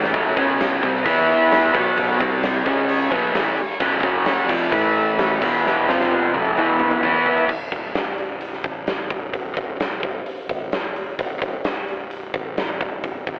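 A thick, gritty overdriven tonewheel organ with a slow rotary speaker takes the lead with sustained chords until 7.5 seconds in this driving blues rock power trio and southern rock excerpt at 130 BPM in 4/4, alongside a crunchy, double-tracked picked guitar riff up front and a growly fuzz bass in the background, while a huge arena drum kit with bright cymbals and a boomy kick plays a fill from 5.7 seconds and carries on with the bass to 13.4 seconds, all colored by a telephone sound and a wet club reverb as the harmony moves from F#m toward Bm and Dsus24.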